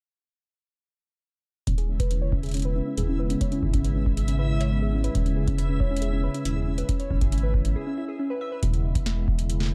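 IDM with an intricate, playful mood, where a rubbery, bouncy square bass sits up front beneath a booming analog drum machine with crisp snare and metallic hats, a deep electronic kick, a hollow, flute-like pad pumping under sidechain, a ringing harp-like synth pluck spinning chorused, tape-echoed arpeggios through a filter sweep until 8.6 seconds, and a reversed, dreamy granular texture swelling in at 2.5 seconds, all in a dark production with light reverb.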